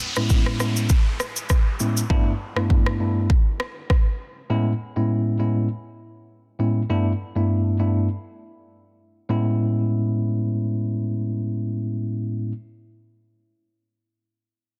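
An electronic afro-pop drum kit with a deep kick, rim click and shaker opens alongside a sinking electronic downlifter in this joyful, breezy afrobeats excerpt at 100 BPM in A major with a lightly swung sixteenth feel. A clean, bell-like tine electric piano heard through built-in speakers enters up front at 0.2 seconds, alternating Amaj7 and G6 chords. The tape-warm drums stop at 4.1 seconds and the downlifter ends at 4.5 seconds, after which the piano carries on alone until 12.5 seconds, all within a digital ambience and a dense, heavily limited modern master.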